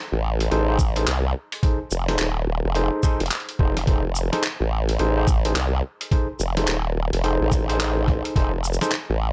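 Funky and playful, this swung glitch hop fragment rides a single F7#9 chord. An up-front, thumpy electronic kick and a pitched-down, compressed sampler kit of handclaps, hi-hat, shaker and medium-tuned snare in a small room play alongside a wobbling, up-front formant-sweep bass of sawtooth and sine, thickened by chorus and overdrive. Meanwhile, a bright, barky, gritty tine electric piano plays stabs through a combo amp with sidechain pumping and tape echo, in a largely dry mix.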